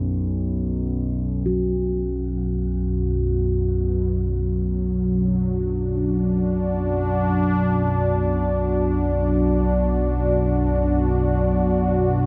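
Dark ambient drone in free time and B minor, this ominous excerpt from a longer piece opens on a detuned sawtooth and pulse-wave analog drone, sustained and up front with chorus, alongside a pure, ringing quartz singing bowl struck with a felt mallet and bathed in airy shimmer reverb. At 1.5 seconds a bright, resonant pad enters with detuned sawtooth chords under chorus and shimmer reverb, while a filter sweep moves across the evolving drone as the harmony settles from F#sus4 over B to B minor. The whole passage sits in a huge, wet reverberant space with an 8.4-second decay, its slow attacks and long releases giving it a meditative yet foreboding weight.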